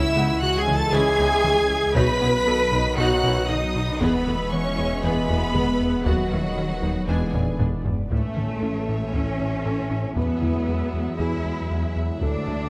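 Cinematic hybrid orchestral and electronic film score, brooding and vast, in a straight 4/4 that moves through C#m, B and E before opening onto A and Eadd9. A warm, lush violin section carries the melody high above a focused chamber violin line in the background, a very quiet close viola section with expressive portamento, and a rich, distant cello section that shares the bass with a clear double bass section entering at 0.2 seconds. Dark, roomy French horns and very quiet, soft-attack trombones hold sustained chords beside a shimmering, retro pulse-width pad, while a harp-like synth pluck rings through mellow arpeggios and a dark, intimate baby grand piano adds faint texture with audible action noise. Underneath, a rubbery, nasal square bass plays a bouncy riff, and a thick, menacing detuned saw bass adds beating low weight until 8.1 seconds. Taiko ensemble drums with heavy sticks enter at 1.4 seconds, compressed and saturated in the background, and land a fill just before the second section, all set in a moderate scoring stage reverb.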